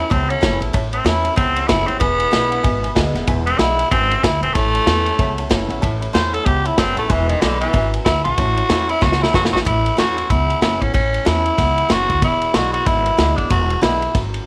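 Swung eighths drive this rowdy, retro rockabilly excerpt: a raspy, gritty tenor saxophone takes an up-front solo over a thumpy, woody upright bass and a vintage drum kit with dark cymbals and a tight kick, while a bright, boxy picked acoustic guitar and a mellow upright piano sit in the background until the piano drops out at 9.6 seconds, just as a drum fill from 9.0 seconds leads into a new section.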